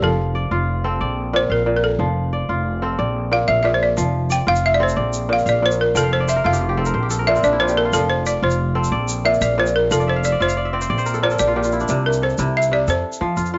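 West African traditional music in 12/8 at 121 BPM in F major, hypnotic and joyful, this short cut from a longer piece rocks between F and Bb over a balafon solo, its woody, buzzing melody struck with hard rubber mallets and close-miked, while a bright, ringing kora fingerpicks crisp arpeggios and adds fills at 6.0 and 10.0 seconds. A growly, thumpy pizzicato upright bass on steel strings sits up front beneath them, and a grainy egg shaker enters at 4.0 seconds. At 11.9 seconds the harmony moves to C before settling on F, all within light studio reverb and a soft top end.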